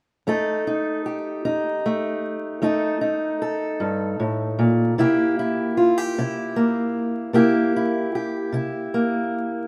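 A fingerpicked steel-string acoustic guitar carries this short blues fragment alone, its parlour-sized tone boxy and placed up front, ranging from F2 to A4. The mood is laid-back and swaggering, moving at 51 BPM in dotted quarters within a 12/8 metre that keeps a straight feel, centred on F mixolydian. The guitar opens on F7 at 0.3 seconds and shifts to C7 at 5.0 seconds, playing through to 9.7 seconds. A moderate, lush hall reverb with a 2.6 second tail surrounds the instrument, while the rough home-demo mix carries a layer of vinyl crackle. The clip is cut from a longer piece.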